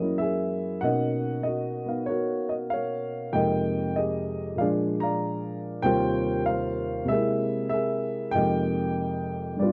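Swung eighth notes in 4/4 carry this moody solo jazz fragment, cut from a longer piece, with a dark upright piano playing alone across its 9.7 seconds. The woody, boxy piano sits up front with long sustain, spanning Eb2 to Bb5 through rich chords such as Gb13, Fm11 and Eb69. The sound is dry and close, like a 1970s studio recording.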